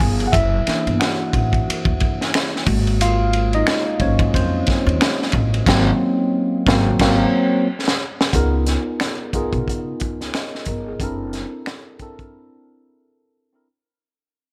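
A swung 16th-note groove at 90 BPM in 4/4 carries this soulful, sultry neo-soul R&B passage, cut from a longer piece, with a crunchy, gritty breakbeat kit of tight kick, high-tuned snare, hi-hat, ride, crash and finger snaps sitting up front with a rolled-off top, alongside a thumpy, woody pizzicato upright bass on gut strings. A clean, up-front tine electric piano colored by analog chorus takes the lead over chords like F#7b13 and G#9, building to a band accent and drum fill before the 8.3-second mark. The music then fades out over C#9 and F#7alt in studio reverb, and the electric piano holds alone through the break from 12.3 seconds.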